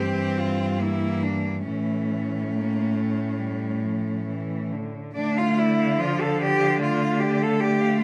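Melancholic and yearning, this short fragment of a longer classical piece for cello ensemble unfolds in D minor at a lyrical 67-76 BPM in 4/4, with a rubato feel that lets the phrases breathe. Four bowed cellos, each a single player with vibrato, sound together throughout the 8 seconds. The melody sits highest, reaching from C#4 to F5 with a smooth, even tone, while a second line between D3 and A4 carries an intense voice with a silky top and stands up front. An accompanying cello, focused in character, holds the middle between F3 and C4, and the bass line, reaching down to G2, sounds even yet distant despite being placed up front. The harmony moves from Edim/G to A at 1.7 seconds, then settles on Dm as a new section begins at 5.2 seconds, all within a light reverb.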